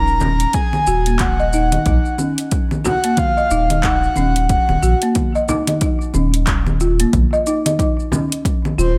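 Swung sixteenths at 91 BPM in 4/4 drive this hypnotic, mystical organic downtempo fragment in Eb minor: an overdriven deep house kit of congas, handclaps, metallic hi-hat and shaker combines with a deep frame drum played with soft hands, and a punchy, overdriven electronic kick joins at 0.5 seconds. A round sine sub bass pumps beneath while a dry, woody folk marimba with medium mallets plays delayed arpeggios. Up front, a breathy, flute-like synth lead with subtle chorus, delay and vibrato carries the melody over an Ebm chord that drops away at 5.2 seconds, all inside a lightly reverberant room.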